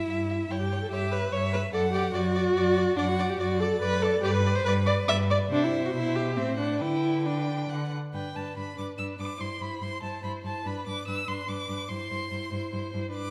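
In a quick 3/4 at 143 BPM with a rubato feel, this graceful, lively classical-period movement for string quartet in G major is cut from a longer piece. A focused first violin with vibrato carries the melody over a smooth, distant second violin line, while the dark, expressive viola, with its soft attack and portamento, sits close and up front, and the rich cello bass, also with vibrato and portamento, is likewise up front. The quartet plays in a wet recital hall, and a new section begins at 8.1 s on a G chord.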